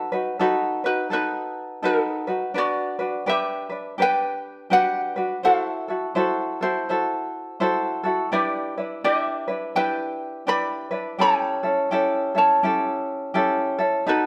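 Hawaiian music in E minor, this short excerpt drifts along at 83 BPM in 4/4 with a relaxed swing on the eighth notes, giving it a dreamy, languid mood. Two acoustic ukuleles play throughout the full 14.3 seconds, both fingerpicked with a light touch and sitting up front in the sound. A ukulele carries the melody, reaching from D#4 up to B5, while a tenor ukulele supplies the accompaniment in a narrower span from C#4 to C5. The harmony moves from B7 through Em9, F#m7b5 and Em7 before arriving on A7. The pair sound as if playing live together in a single room, wrapped in a wet stone-room reverb that adds a soft, echoing halo to the gentle plucked tones.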